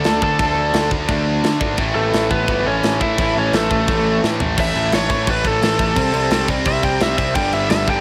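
This rowdy, energetic punk rock excerpt at 172 BPM opens with a compressed, up-front overdriven lead guitar carrying the melody over double-tracked riffs from a bright distorted guitar and a warm overdriven guitar set in the background, a punchy picked bass thick with fuzz, and a tight, big-room metal drum kit with glittering cymbals and a medium-tuned snare, in a light reverb, until a drum fill at 4.2 seconds ushers in the lead guitar's solo from 4.6 seconds.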